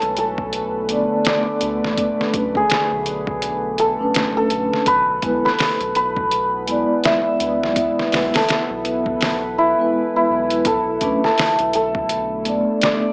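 A hammered santur leads this dark, hypnotic trip hop excerpt, its shimmering, ringing melody sitting up front and trailing a dub echo. Beneath it, a vibraphone played with soft mallets joins at 0.9 seconds, its metallic tone colored by a fast motor vibrato, harmonic tremolo and a gritty vintage 12-bit sampler character. A sampler-style drum kit, compressed, pitched down and muffled, drives the swung groove with a thumpy kick, a medium-tuned snare and hi-hat, though the kick drops out between 9.2 and 10.7 seconds. A round, deep analog bass blending sawtooth and sine holds the low end, while a detuned, warbling ambient pad with a sub octave, chorus and built-in reverb sustains moody chords in the background. The harmony moves from Bm9 to E/B and settles on Bm7, and the whole mix carries light reverb and a small speaker sound.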